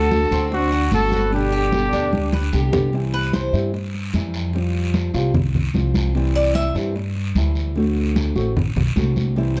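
A sunny Cuban son and guajira piece at 149 BPM opens with a punchy, scooped trumpet melody with light vibrato and plate reverb, supported by a focused, bowed violin section in the background, over dark fingerpicked nylon-string guitar, metallic picked tres arpeggios and a thumpy, woody pizzicato upright bass up front. Bright congas and a raspy guiro join at 0.1 s, and after the trumpet and violins stop at 2.5 s, a drum fill leads into a tres solo from 2.9 s over chords moving through C, Fsus2 and D7. The production is dark, with light reverb.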